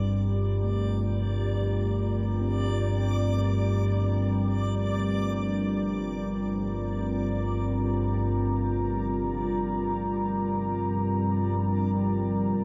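An organ-like drone, calm and up front with ensemble chorus and phaser, anchors this cavernous dark ambient excerpt in G minor and free time, joined by a deep, detuned analog pad holding sustained chords with chorus, a mellow bronze singing bowl ringing arpeggios through delay in the background until 9.5 seconds, a reversed, dreamy swelling texture, and a filter sweep on the drone, all bathed in a cathedral reverb before a huge, very quiet impact lands at 12.6 seconds.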